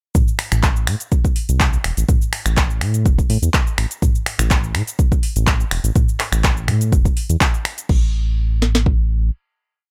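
Spiritual and hypnotic, this short afro house piece in A minor moves at 124 BPM with a light 16th-note swing, its electronic drum kit driving a four-on-the-floor deep kick and sharp snare up front while cabasa, metallic hi-hats, handclaps, finger snaps, low toms and a crash fill out the programmed backbeat until 8.0 seconds. A round, dark analog bass blending sawtooth, sine and triangle tones, detuned and sustained, enters at 0.5 seconds with a syncopated riff spanning E1 to A2, pumping through sidechain compression. Kept dry with little reverb and a tape-tinged glow on the drums, the drop runs until 7.9 seconds before a final note closes the piece.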